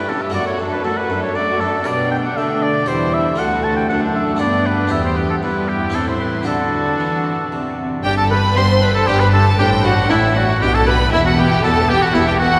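A baroque-style concerto movement in classical style, this lively, brilliant passage in G major moves at 117 BPM in a straight 3/4, cut from a longer piece with solo episodes. An up-front oboe with light vibrato carries the melody alongside a close, expressive violin section singing high above it, while a second violin section with a focused, smooth top supplies a second line. A distant, even viola section and a smooth cello section fill the accompaniment and bass, and a bright, plucked harpsichord in the Italian style sits in the background. At 8.0 s a double bass section joins low in the background as the music moves into a new section, its harmony shifting from G through D5/A and Gadd9/B to a closing E5. The whole ensemble is bathed in a long cathedral reverb that gives the strings a rich, resonant glow.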